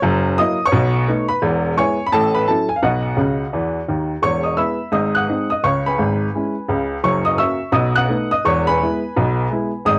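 A clear, woody upright piano with short sustain sits up front, carrying this swinging, exuberant stride jazz passage alone at 171 BPM in E major, ranging from deep bass notes to bright high figures. The harmony moves through dominant-seventh changes such as F#7 and B7 before resolving to E, and a piano fill from 3.2 to 4.2 seconds leads into a new section that passes through G#7 and C#m7. The piano carries the character of cassette tape, and the home recording places it in a moderate small-room ambience, as if cut from a longer performance.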